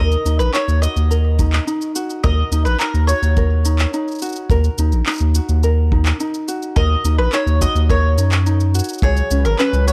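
Folktronica with a delicate, wistful mood, this short excerpt moves at an easy pace in a straight 4/4 over a dark, warm studio ambience. A woody, mellow mandolin carries the melody through tape echo, while a fingerpicked ukulele plays light arpeggios beneath it with the same echo. Underneath sits a round analog bass, deep and up front, with a sine-like tone and a fast attack that sustains into each note. Produced electronic cabasa and handclaps begin almost at once, and a punchy, natural acoustic kick from a small room joins at 1.4 seconds, both set in studio reverb. Near the close, at 9.0 seconds, the harmony moves from Ebm7 to Db7sus4 as a very quiet, reedy pedal harmonium enters with breathing sustained chords.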